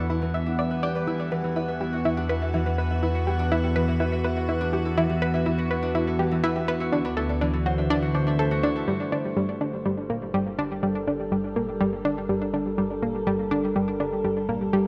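Soaked in cassette-tape haze and a moderate plate reverb, this mysterious, hypnotic fragment of sequencer-driven ambient space music places a bright, detuned analog pluck riff with chorus and tape echo up front alongside a morphing, slow-attack wavetable pad that carries chorused sustained chords, over a fat, saturated sawtooth bass, while ringing fingerpicked concert harp arpeggios sound through tape echo until 11.2 s and a filter sweep on a synth arpeggio sound runs through the first 8.9 seconds.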